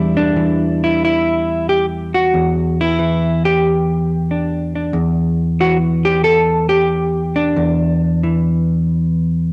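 Solo jazz in E minor at 91 BPM, swung and rubato, with a late-night, smoky mood: a clean, dark hollow-body electric jazz guitar, picked and up front, plays alone across its E2 to A4 range over an Em7 chord for this 9.5-second excerpt cut from a longer piece, with cassette-tape colour and a moderate spring reverb on this home recording.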